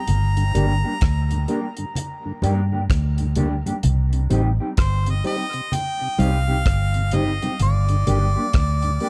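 A bright harmonica opens this heavy, deep dub reggae excerpt in C minor, its punchy, pop-style melody carrying light vibrato and scooped notes and trailing off into dub echo. Almost at once a vintage muted fingered bass arrives up front, dark, round and foam-muted, alongside a damped 70s drum kit whose dry, tight kick, hi-hat and rim click sit at a slow 64 BPM with a swung sixteenth-note feel. Soft-handed congas with a thin, compressed, saturated skin sound bright but stay in the background, dropping out at 8.3 seconds. A mellow tonewheel organ enters at 0.4 seconds, lightly overdriven with chorus vibrato and a slow rotary speaker, and a clean, fingered electric guitar follows at 0.5 seconds, bathed in lush chorus and dub echo. The harmony moves from G minor to C minor and back to G minor, all wrapped in a small room ambience.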